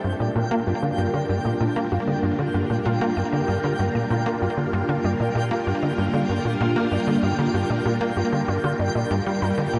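Soaked in a huge, dreamy reverb, this expansive, hypnotic stretch of sequencer-driven space music in G minor at 96 BPM rests on a single Gm7 chord, with a tight, punchy, nasal sawtooth sequencer bass riff and swirling, vintage phased string-machine chords up front, while a detuned, wave-folded unison pluck spins delayed arpeggios in the background and a twinkling granular texture adds a sparkling octave-up shimmer on a high G.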